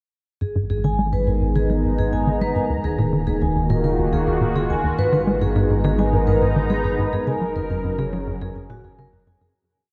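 Ambient, sequencer-driven space music in G# dorian at 105 BPM, cosmic and expansive, with a tight, punchy sequencer bass of sawtooth and square waves running a 5-step loop that drifts against the bar under a filter sweep, while a round sine sub bass holds the roots and a detuned, resonant pad with chorus sits up front, its slowly shifting chords moving from G#m through D#madd9 to F#. A mellow vibraphone played with soft mallets rings out a 9-step arpeggio loop through tape echo, and at 5.0 s a smooth, full-bodied sawtooth lead with vibrato, ensemble chorus and tape echo enters with a free, expressive melody. The whole piece lives in a vast, echoing space with a huge reverb and a cassette-tape character, fading out from 6.5 s.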